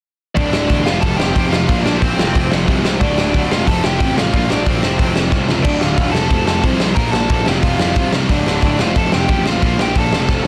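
A dense, heavily limited and dry punk rock excerpt at 181 BPM in 4/4 bursts with angry, raw energy, as a dark, distorted bluesy lead guitar plays the melody over two bright, picked overdriven rhythm guitars churning a riff on D, F and Bb chords, a growly fuzz bass, and an up-front, gritty garage drum kit with a punchy kick, medium-tuned snare, hi-hat and crash, whose fills land at 5.3 and 10.3 seconds.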